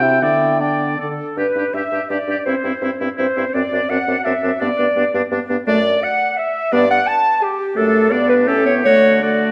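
Lively and cheerful, this quick classical-period movement for wind quintet moves in 3/4 at 154-174 BPM with a rubato feel, starting in G major and turning to D major at 5.7 s, and it is cut from a longer piece. The silver concert flute carries the tongued melody with a pure, metallic tone and vibrato, set back in the distance, while the clear oboe adds a second line with light vibrato and a soft attack. A close-miked clarinet sits up front with the French horn in the accompaniment, and a present, soft-edged bassoon supplies the bass, all wrapped in a dark, warm sound and the reverb of a recital hall.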